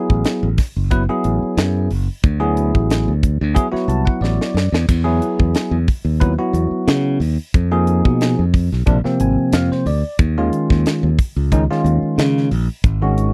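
A bell-like tine electric piano with lush chorus opens this slick, funky electric jazz fusion excerpt at 91 BPM, joined almost at once by a growly fingered electric bass and a crisp drum kit with a high-tuned snare, tight kick, hi-hat and crash cymbal, all sitting up front in a dry, close 1970s-style studio sound. Over a lightly swung 16th-note feel, the chords move from A5 through Dadd9, Emaj7, Fm7b5 and A#7 to D#sus2. The electric piano adds fills at 3.6 and 8.9 seconds, and the drums play a fill at 4.2 seconds.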